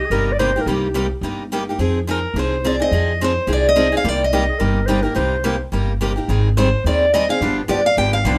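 Fiery yet bittersweet, this brief excerpt of acoustic string swing in C minor races at 214 BPM with a swung feel, as a bright, up-front picked steel-string guitar carries the melody over a second picked guitar's accompaniment, flecked with finger squeak from fresh strings, and a woody, thumpy pizzicato upright bass on gut strings, while a mellow clarinet with vibrato and scooped notes adds a jazz-style second line in two short bursts at 0.0 and 4.5 seconds, all set in a moderate studio reverb over a Cm7 to Fm7, Abmaj7 and G7b9 progression.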